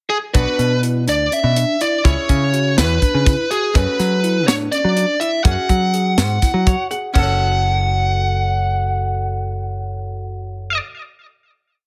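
Progressive instrumental in a tense, brooding 7/8, with a distorted, delay-washed lead guitar carrying an up-front motif of arching phrases over a punchy picked bass riff and a dry, tight funk kit with a high-tuned snare, while a bell-like electric piano loops a phaser-tinged arpeggio ostinato and a dark, clean archtop guitar holds rootless chords in the background, adding a fill at 6.4 s before the drums stop at 7.3 s and the band rings out on a final chord under light reverb.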